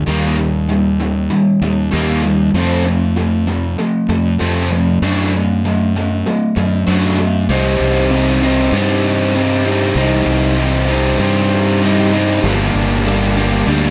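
Cinematic and brooding, this post-rock excerpt at 97 BPM pairs a picked, double-tracked overdriven electric guitar riff with a fuzz-laden fingered electric bass, both up front throughout its 13.9 seconds, building through Eb, F and D/F# before settling onto Cm at 7.5 seconds and Gm at 12.4 seconds, all wrapped in light digital reverb and a dark production.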